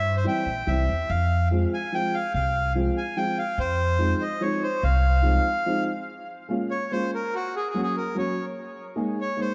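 A 3/4 musette waltz at 145 BPM, bittersweet and whirling, cut from a longer piece in F minor that turns toward Bb minor at 6.1 seconds. Throughout, a reedy, airy accordion carries the melody with a diffuse ambient delay over a dark, woody upright piano and a thumpy gut-string upright bass plucking below until 5.4 seconds, all set in a lush hall reverb that gives the mix a dreamy glow.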